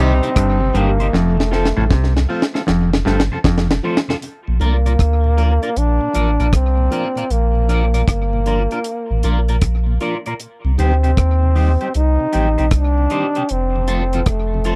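A laid-back, warm mood settles over this roots reggae passage, cut from a longer piece and carried by a swung sixteenth-note feel. A breathy, whispered trombone sings the melody with vibrato and dub echo, while a distant horn section adds a brief second line that ends after 0.7 seconds. A slightly broken-up, twangy electric guitar with phaser and dub echo and a mellow tonewheel organ, heard in the background through a slow rotary speaker with slapback echo, fill out the accompaniment. A stringy clav riff sits low until 3.7 seconds, over a round, sine-like sub bass and a dry, dark drum kit with a high-tuned snare, tight kick, rim clicks and hi-hat, which plays a fill starting at 1.1 seconds. The harmony moves from Cm to F, settles on Bb, then returns to Cm and F, all captured in a close, dry 1970s-style studio sound with light reverb.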